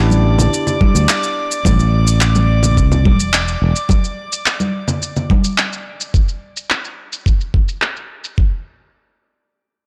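Sunset chillout at 107 BPM with a smooth, wistful mood, this excerpt opens on a thumb-plucked classical nylon-string guitar under a filter sweep and tape echo over A9sus4, a growly, punchy fretless electric bass, and a glassy, drifting harmonics texture with chorus, while bright congas played with hard hands, a layered electronic shaker and handclaps, and a gritty, thumpy sampler-style kick from 0.8 seconds drive on past the guitar's exit at 1.6 seconds and the move to Dsus2/A, all within a blown-out, overdriven recording.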